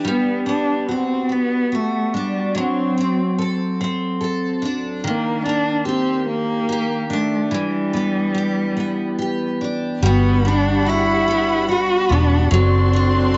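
A small room's light reverb and a softened, rolled-off top give this short cut from a longer six-eight pop ballad an intimate, heartfelt and romantic air. A bright, full-bodied, double-tracked steel-string acoustic guitar picks the accompaniment up front, finger squeaks included, beneath a dark, bowed solo cello that carries the melody with expressive vibrato and portamento as the harmony moves through Gmaj7, D7/F#, Ebmaj7 and Em7. At 10.0 seconds a lush studio string section enters with sustained chords alongside a round, punchy, foam-muted vintage electric bass, as the harmony returns to Gmaj7 and then D7/F#.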